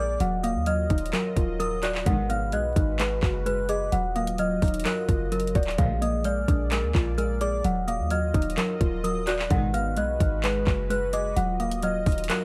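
An echo-heavy digital ambience laced with vinyl crackle surrounds this melancholic, brooding trap excerpt, cut from a longer piece and moving with a half-time feel. A worn celesta carries the melody with a sweet, bell-like tone from hard felt hammers, slightly out of tune and darkened by a low-pass filter and tape echo. High above it, a tinkling FM tine bell traces a second line through chorus and tape echo. Beneath, a warbly, lo-fi pluck built from detuned waveforms with a sub octave plays the accompaniment, while a sweeping, airy pad holds sustained chords in the background. Up front, a clean, boomy 808-style bass with a sine-like depth sits beside the trap drum kit, which enters at 0.2 s with a hard-clipped kick, metallic hi-hats and handclaps. Three brief stabs from a lush, bowed symphonic string section sit in the background over the cycling chord progression.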